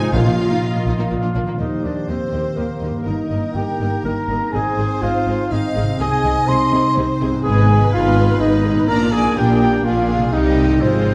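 This restless, urgent orchestral passage, cut from a longer classical piece in Eb major at 124 BPM in a straight 3/4, opens with most of the string body already sounding: a very quiet violin section carries the melody with light vibrato over a lush, focused second violin line, a very quiet, intense viola section in accompaniment, and a close cello section holding the bass in the background. A clear double bass section joins the bass at 0.1 seconds, when a close, dry timpani stroke on calf heads sounds briefly before stopping at 0.8 seconds. Around the strings, a distant, roomy clarinet plays a second line, mellow French horns hold sustained chords in the background, a trumpet section adds stabs with a touch of vibrato, and a ringing, fingerpicked concert harp spreads arpeggios across its register. At 1.1 seconds an airy baroque flute with a wooden, straight tone and rolled-off highs slips into the background with its own second line. 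The harmony moves from a suspended opening through Eb, Ab and a darkening Ab minor toward Bb and a closing C minor, all bathed in a wet scoring-stage reverb that gives the production a dark, warm character.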